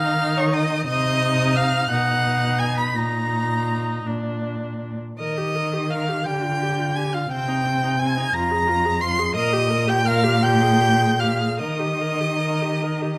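Classical slow romantic movement for string quartet in Eb major, a lyrical 6/8 excerpt cut from a longer piece at a rubato 49-60 BPM, where a distant, expressive first violin sings the high melody with vibrato and portamento over a soft-attacked second violin line, a rich, even viola accompaniment and a dark, woody cello bass placed up front, all captured with close, detailed microphones in light reverb with some lossy compression artefacts.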